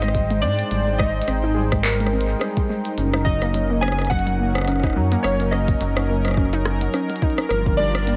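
Set in a light reverb, this short, playful IDM fragment has a glitchy, lo-fi charm, moving at 106 BPM in 4/4 with a gentle swing on the sixteenths. A dark, detuned saw bass sits up front with a deep, rumbling, beating tone, while a soft, overdriven electronic kick enters at 0.1 s and drops out at 7.8 s. A glitchy drum kit of handclaps, clicky hi-hats and rim clicks is roughened with overdrive and scattered through delay. Over this, a smooth analog pad holds sustained chords with chorus, tremolo and sidechain pumping, and a dusty, mellow pluck traces arpeggios through chorus and tape echo. Leading the way, warbly, nostalgic synth keys with a ring-modulated edge carry the melody through chorus and delay, as the harmony drifts from Abmaj7 to Gb6 and lands on Gm7 near the end.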